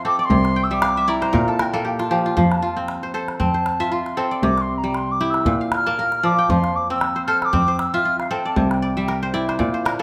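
A crisp, ringing kora sits up front in this joyful clip of West African string and xylophone music, its fingerpicked arpeggios carrying a gently swung 16th-note feel and breaking into fills along the way. A pure, mellow wooden flute takes a distant, tongued solo with vibrato until 9.5 seconds, while a single bowed cello plays a dark, woody bass line sul tasto with vibrato, also sitting distant in the mix. A small calabash enters at 0.3 seconds, and a moderate recital-hall reverb lends the whole warm blend a sense of space.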